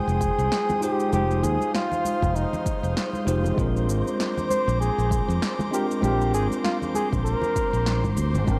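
A lightly swung sixteenth-note groove in 4/4 drives this smooth, relaxed sunset chillout excerpt. A deep, overdriven electronic kick and a punchy electronic snare with cabasa, both given cassette-tape grit and re-recorded in a small room, sit beside soft-handed congas in the background and a round, up-front fingered electric bass with tube saturation. Over a move from Fm9 to Bb9 at 3.6 seconds, a mellow flugelhorn takes the jazz-style solo melody up front with light vibrato and scooped notes, coloured by cassette tape and analog delay, while a clean tine electric piano played through a combo amp adds delayed accompaniment, and a breathy, chorused pad holds sustained chords as a dark, wind-like tuned noise texture drifts behind it in its own reverb, all within a home cassette recording with light reverb.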